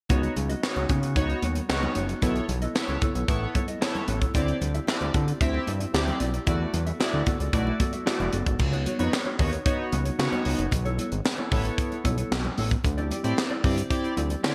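A danceable, feel-good slice of early-eighties boogie funk, cut from a longer piece, rides a straight 4/4 groove with a bright, 1980s-style digital sheen and a touch of small-room ambience. Up front, a fat, thick analog bass built on detuned sawtooth tones with a filter sweep anchors the low end, alongside a tight funk kit whose high-tuned snare, tight kick, dark cymbals, hi-hat, crash and handclaps are bathed in gated reverb. A glossy, full-bodied polysynth carries the harmony with evolving pulse-width tones and chorus, moving through sus4 ninth chords that begin on Db9sus4 and step through Cb9sus4, D9sus4 and E9sus4. Tucked in the background, a dark, clean, fingered electric guitar plays a compressed riff with a subtle chorus, while very quiet congas add a bright, thin-skinned patter. The chord cycle starts over at 8.6 seconds as the music moves into its second section, with every part playing throughout.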